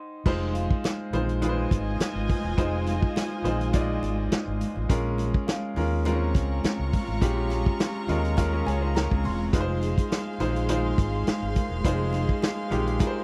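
Bittersweet and smooth, this excerpt of lush 1970s-style soul at 104 BPM, with a lightly swung 16th feel, moves from Fm7 to Bbm7 over a tight, up-front drum kit with dark cymbals, punchy overdriven fingered bass and a brilliant grand piano that adds a fill at 7.8 seconds; a bowed chamber string section with light vibrato enters at 1.4 seconds, a very quiet bell-like celesta and distant high-tuned congas sit beneath, and a lo-fi electric guitar riff surfaces briefly in the background at 8.5 seconds, captured in a dry, close studio sound.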